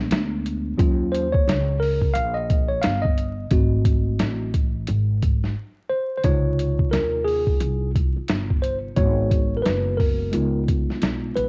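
A worn, slightly out-of-tune tine electric piano takes the lead, soloing over a mellow, smooth jazz-hop groove at 88 BPM in Db major with a lazy 16th-note swing, its chords moving from Bb7b9 and Ebm9 toward Dbmaj9 and Db13 after a short break at 5.6 seconds. A woody, dark pizzicato upright bass sits up front beside it, while a compressed, pitched-down sampler-style drum kit adds a thumpy kick, medium-tuned snare and hi-hat with a muffled cassette-tape character. Light reverb and vinyl crackle give this cut from a longer piece a warm, homemade feel.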